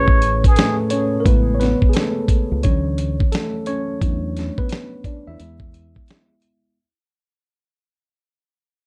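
A worn, slightly out-of-tune tine electric piano with a cassette-tape character takes a solo from 1.3 s in this dreamy, nostalgic lo-fi hip hop excerpt at 87 BPM in A major, after a brief jazz-style trumpet line with plunger-mute wah-wah, vibrato, scooped notes and tape echo ends at 0.8 s, while a gritty, compressed sampler-style drum kit with a thumpy kick sits up front and a round fingered electric bass plays until 6.0 s, as the dark, lightly reverberant mix fades out over Amaj9, Dmaj9, E7sus4 and E chords.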